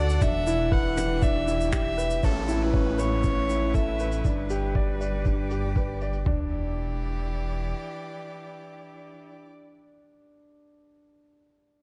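Piano and strings electronica with a hypnotic, cinematic mood, this short cut from a longer piece opens on a drop and moves through Em7, Aadd9 and G before returning to Em7. A close, reedy solo violin with a gut-string, period-style tone sings the melody through a delay, falling silent at 4.3 seconds. Beneath it a bright, focused string quartet holds bowed chords with vibrato that pump against the sidechain, while a grand piano repeats a delayed riff that carries on alone to 11.8 seconds. A deep, rumbling detuned saw bass sits up front, its unison voices beating darkly and pumping in time. The drums pair a muffled, pitched-down sampler-style kit with a thumpy kick, toms and tape-warm compression against a brushed acoustic kit of finger snaps, shaker and filtered toms, while an electronic downlifter sinks in the background from 2.2 to 6.3 seconds, all set in a small, lightly reverberant room.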